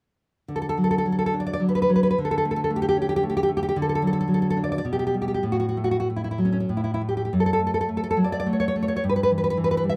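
In a three-beat metre played with free, breathing rubato, this tender romantic piece for solo classical guitar unfolds as a short passage lifted from a longer work. The fingerpicked nylon-string guitar sits up front with a deep, warm acoustic tone, playing alone from 0.5 to 10.0 seconds and moving through gentle chord changes, with a brief chordless moment near 6.7 seconds. A light reverb gives the intimate sound a soft sense of space.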